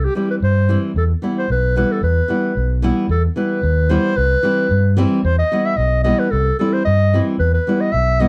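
A classical-style clarinet takes the solo melody up front from the start, over a punchy, overdriven fingered electric bass, with a bright, fingerpicked flamenco guitar joining at 0.1 seconds, its finger squeaks audible. This restless, virtuosic Balkan wedding-band folk moves in a swung two-beat feel, circling between C and E minor chords as the opening phrase repeats from 3.1 seconds. The short cut from a longer piece has a dark, warm production with light reverb, and all three parts sit close and present in the mix.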